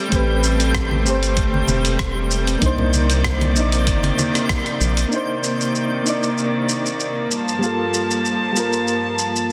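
A bright, biting studio string section opens this short cut from a longer sunset chillout piece, holding up-front bowed chords with light vibrato through a low-pass filter, while a twinkling granular texture sparkles high in the background with octave-up shimmer. At 96 BPM in 4/4 with a gentle swing on the sixteenths, the mood is relaxed and warm, moving through Am9, Cm9 and Gm9 chords. Soft, round electric-piano-like synth keys carry the accompaniment with chorus, tremolo and tape echo, and a deep analog bass sits up front with tube saturation until about 5.0 seconds. The dusty, gritty sampler-style kit supplies hi-hat, rim click and shaker, with soft clipping on the snare, joined by a thumpy electronic kick and soft-handed congas tucked in the background during the first half. The band hits an accent at 4.5 seconds before the second section begins at 5.1 seconds, where the strings, keys and kit carry on. 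A moderate lush hall reverb surrounds the parts, and the master is dense and heavily limited.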